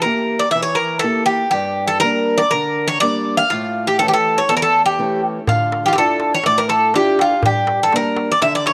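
A light reverb surrounds this short cut from a longer Greek folk piece for bouzouki band, which moves at 122 BPM in a straight 4/4 with a brooding, bittersweet mood. The bouzouki sits up front and carries the melody between F4 and F5, its picked double strings sounding metallic, with some strings doubled at the octave. Beneath it, a fingerpicked acoustic archtop guitar plays a boxy accompaniment from E2 up to G4, and finger squeak can be heard on its strings. The chords move from Edim through Gm and A to Dmadd9, then back to Gm. At 5.5 seconds a darbuka joins, close and dry, its metal shell giving crisp strokes from hard hands.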